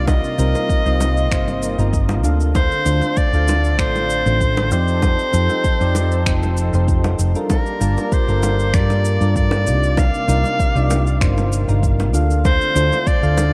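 Dark, lightly reverberant production frames this smooth sunset chillout clip, where a breathy, intimate soprano saxophone with vibrato and tape echo carries the melody over mellow electric-piano-like synth keys treated with chorus, tremolo and echo, a lush detuned pad in the background, a round, punchy hollow-body electric bass up front, a deep layered electronic kick, electronic shaker and finger snaps, and low-tuned bongos sitting back in the mix, all moving through Cm11, Dm7 and F7 chords.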